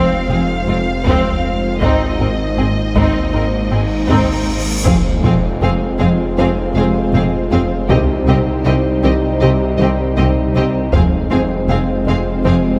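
Vast and brooding, this 79 BPM cinematic excerpt in F minor blends orchestra and electronics, with a lush, distant violin section carrying the melody over a clear second violin line, an intense viola accompaniment, an ethereal pad with ensemble chorus, a woody wave-folded pluck playing arpeggios, and a menacing detuned saw bass, joined from 0.3 seconds by very quiet cellos and double basses, then heavy compressed taiko drums, a huge dark cymbal swell that lands on an impact at 4.9 seconds, and a mellow, vintage French horn section holding chords in the background, all set in a moderate scoring stage reverb.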